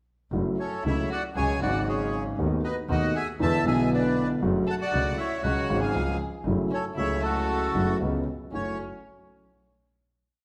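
Tango, passionate and dramatic, played rubato as a complete piece by a band in one room with a wet, large studio reverb and a faint mains hum. A dark, woody upright piano up front and a biting, distant bowed double bass carry the uneven three-and-two eighth tango rhythm from 0.3 seconds, while a reedy bandoneon sings a motif-based melody in sentence phrases, partly doubled in thirds. A bowed violin adds an expressive second line with vibrato, portamento and octave doubling before the band settles on a final F#m7 chord at 8.5 seconds.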